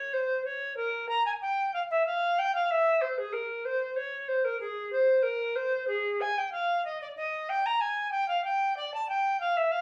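Freely rubato over a loose 4/4, this solemn, introspective 9.8-second excerpt of a baroque-style classical fantasia features an unaccompanied tenor recorder ranging from Ab4 to Bb5, its pure, woody tone carrying vibrato and a tongued chiff on the attacks, set up front within a moderate large-studio reverb and a hint of small-room ambience.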